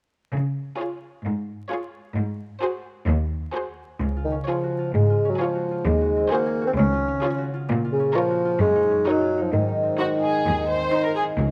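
Cinematic, whimsical film cue in Db major at 130 BPM in 4/4, mischievous and playful, cut from a longer piece. A clear cello section sets down the bass from 0.3 seconds, soon joined by a bowed violin section carrying a smooth, rich melody with vibrato, a lush second violin line held up front, and an even viola section in accompaniment. From 4.0 seconds a mellow concert harp adds ringing arpeggios while a dark, roomy solo bassoon joins the accompaniment, all in a close, detailed studio sound with light reverb and a touch of vinyl crackle.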